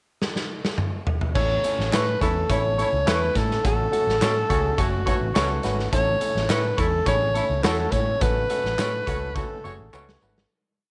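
Uptempo 1960s-style soul with an uplifting, warm mood, where a gritty, saturated garage drum kit opens with a fill before an up-front, clear alto saxophone with vibrato and subtone enters at 1.4 s with a hook-based jazz-style melody over a punchy fingered electric bass line with chromatic approach notes, a grand piano playing close-voiced eighth-note chords with audible action noise, very quiet tambourine and handclaps on the backbeat, lo-fi, slightly broken-up electric guitar chops in the background, and short stabs from a distant, roomy horn section, set in a small room with light reverb until the fade-out from 8.2 s.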